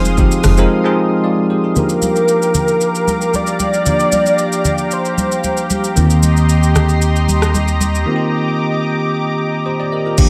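Amapiano at 114 BPM in Bb mixolydian with a relaxed feel, opening on a velvety, chorused synth lead with tape echo over a bell-like tine electric piano, a lush, warbling unison pad that pumps against the sidechain, a deep, round log drum bass that sounds only until 0.7 s, an overdriven deep house kit of kick, hi-hat, rim click, shaker and crash, and thick-skinned congas, with a punchy fingered electric bass appearing from 6.0 to 8.0 s as the chords move from Fm7 through Bb6 to Eb6 under light reverb.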